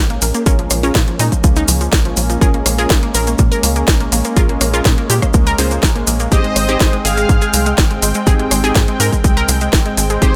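Emotional, driving progressive house at 123 BPM in Bb dorian, this excerpt rides a punchy up-front electronic kick, cracking snare with hi-hat and rim click, grainy background cabasa, a tight nasal sequencer bass, round detuned analog pluck arpeggios and lush unison pluck stabs with dub echo, the synths pumping alongside a smooth chorused pad with tremolo on Bbm7, until at 6.3 s the harmony moves to Abmaj7 as an evolving soft supersaw melody and an airy, dreamy high lead with vibrato join in digital ambience.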